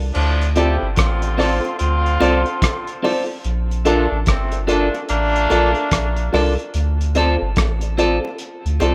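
Laid-back and meditative, this short roots reggae excerpt at 73 BPM in D minor moves through Dm7 and Bbmaj7 over a deep, round dub sub bass, a clean electric guitar with spring reverb and dub echo, a punchy up-front horn section with light vibrato and dub echo that drops out at 6.3 seconds, woody stabs from a dark upright piano, very quiet high-tuned bongos and a cloth-damped, gritty drum kit with tight kick, hi-hat, rim click and crash, all set in a rough home demo mix with small room ambience.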